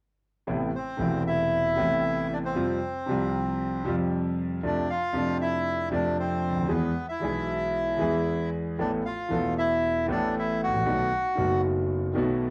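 A rubato 4/4 pulse carries this melancholic, dramatic tango fragment, where a smooth, vintage-toned concert grand piano with deep bass plays the accompaniment from 0.5 to 12.5 seconds, colored by a cassette tape effect. A reedy, bright bandoneon carries the melody from 0.8 seconds, sitting up front beside the piano before falling silent at 11.6 seconds. The home recording sits in a wet small room that adds its ambience to this brief excerpt.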